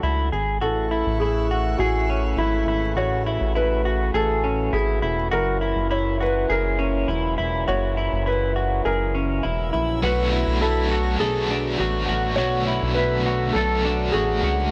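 This dreamy, floating dream pop excerpt opens with a soft, felt-muted upright piano carrying the melody with audible action noise and tape echo, set over stopped, metallic French horn chords, a dark, clean semi-hollow guitar playing arpeggios through lush chorus and tape echo, and a glossy, retro synth bass sitting up front. A glassy texture of drifting overtones hovers faintly in the background, first briefly at 0.9 seconds and again from 9.6 seconds, with chorus, reverb and tape echo. At 10.0 seconds an overdriven, picked electric guitar with tremolo and subtle chorus joins as the harmony moves to Bm7, and the recording keeps a dry, gritty hardware character throughout.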